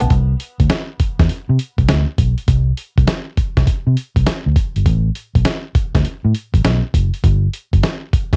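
A vintage muted electric bass carries the low end of this short, punchy R&B clip in a new jack swing style, its dark, round, foam-muted tone sitting up front and ranging from F#1 to C3. Beside it, a dusty soul sampler-style drum kit plays hi-hat, thumpy kick and medium-tuned snare, compressed and gritty with a vintage 12-bit sampler character. Both parts run together from 0.0 to 8.4 seconds at 101 BPM in 4/4, with a 66% swing on the sixteenths that gives the groove a bouncy feel. The tuning rests slightly below standard pitch at A4 = 437 Hz. The sound is dry and close, with the lo-fi texture of a home cassette recording, and the clip is cut from a longer piece.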